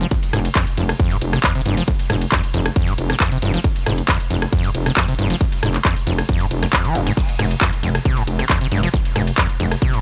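A dry mix opens this excerpt of driving peak-time techno in F minor at 136 BPM, tuned slightly low to A4 = 437 Hz, with a relentless, straight 4/4 feel over an F5 chord. A heavy, layered electronic kick anchors the groove alongside a produced drum kit of crash, ride, handclaps, rim clicks and smooth hi-hats, with the hats and cymbals pumping against the kick. A gritty, saturated synth bass holds F1 and pumps in time, while a screaming acid riff between Eb2 and F3 squelches through a resonant filter sweep, thickened by distortion, chorus, delay, cassette-tape coloring and its own sidechain pumping.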